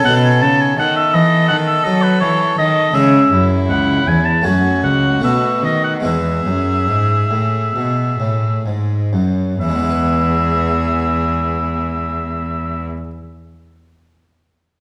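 This serene, dance-like baroque-style sonata movement in E major opens with all four parts together over a B7 chord: oboe, violin, cello and harpsichord continuo in a straight 4/4. The oboe carries the melody from B4 to A5 with a clear, roomy classical tone and light vibrato, standing up front as the solo voice. Beneath it, a single bowed violin plays a smooth, even second line close to the listener, while one bowed cello anchors the bass with a focused, vibrato-touched sound that matches the oboe's prominence. The close-miked French-style harpsichord, with three sets of strings, supplies a dry, brilliant, full accompaniment that sounds on briefly after the strings and oboe stop at 12.9 s. The pace of 62-84 BPM gradually slows through the opening passage as the harmony moves through C#m, F#m and B7 to E, and a new section begins at 9.6 s. A recital hall reverb gives the dark, warm production a gentle bloom in this passage cut from a longer piece.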